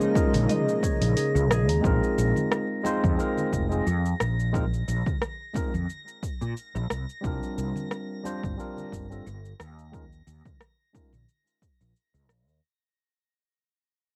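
Warm and wistful, this sunset chillout excerpt moves at an easy pace with a light swing. A lush, thick sawtooth pad with chorus and a mellow concert harp playing ringing arpeggios open the piece, the pad stopping at 1.8 seconds and the harp at 3.8 seconds. A punchy, overdriven electronic kick and a layered deep house kit of cabasa, hi-hat, rim click and toms carry a cassette grit, while congas struck with hard hands sit in the background. Up front, a round, dark fretless electric bass with ensemble chorus anchors the low end beneath a bright, barky tine electric piano whose overdrive passes through a combo amp, and a filter sweep on that piano runs from 1.8 seconds as the music fades out. A calm, glassy harmonics texture drifts high above throughout, and the booth-sized room and home cassette recording give it all an intimate, vintage feel over mostly suspended ninth chords.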